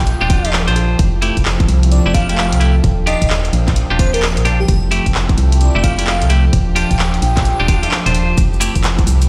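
Sunny and bouncy, this swung two-step UK garage passage pairs an airy, dreamy lead carrying the melody, with chorus, 12-bit sampler grit and tape echo, against bright, twangy clean electric guitar stabs and a rich bowed violin section holding chords in the background. Beneath them, a hollow, organ-like FM bass sits dark and up front, while a warbling, nostalgic pad with chorus and built-in reverb pumps alongside the strings. A tight, tape-warm electronic kick anchors the punchy analog drum machine's handclaps, hi-hat and rim click, with grainy maracas arriving at 8.4 seconds, all placed in a big, stony room.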